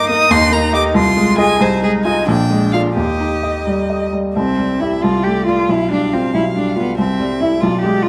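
Closely miked in a moderately reverberant recital hall with a faint mains hum, this urgent, restless fragment of a quick classical-period piano trio movement in a rubato 6/8 sets a clear, smoothly bowed violin melody with vibrato above a warm, even cello second line and an up-front, open baby grand piano accompaniment of short sustain, moving into a new section at 4.4 s before breaking off at 8.1 s.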